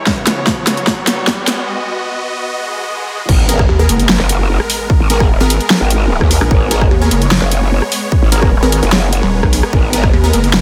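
Lush, sub-octave supersaw chords under a low-pass filter and a background riser open this heavy, chaotic half-time wobble dubstep excerpt, joined by a punchy, tape-warm electronic kick and a dubstep kit with a huge snare and bright hats, building through a brief break to a drop at 3.3 s. There an impact lands and a growling, saturated growl bass surges up front, followed shortly by mellow, delayed supersaw stabs over the sidechain-pumped chords and a detuned, pulsing pluck wobble bass up front.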